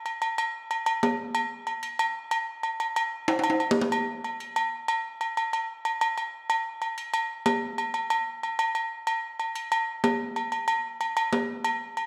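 Jazz with a sunny, lively spirit, this short excerpt cut from a longer piece features agogo bells and timbales as its only voices, carrying the percussion part from 0.1 s to 12.1 s. The metal-shell timbales and bells ring with an acoustic tone, heard close, dry and up front. Around them sits a large studio reverb that lends the recording a roomy tail. The straight 4/4 feel drives the passage, and a drum fill at 3.3 s leads into a restatement of the opening section at 3.9 s. The result is a compact, buoyant percussion showcase.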